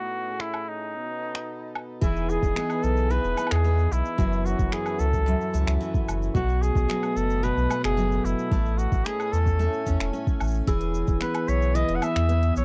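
A dry, close 1970s-style studio sound frames this playful folktronica excerpt in E major at 111 BPM, where a clear, vibrato-tinged flugelhorn with tape echo carries the melody over reedy pedal harmonium chords and crisp-hatted organic electronic drums with cabasa, finger snaps and woodblock, before a bright picked steel-string acoustic guitar with tape echo, a round, deep sine sub bass and a soft overdriven electronic kick arrive at 2.0 seconds, and a bell-like glockenspiel with rubber mallets rings faintly in the background from 10.7 seconds.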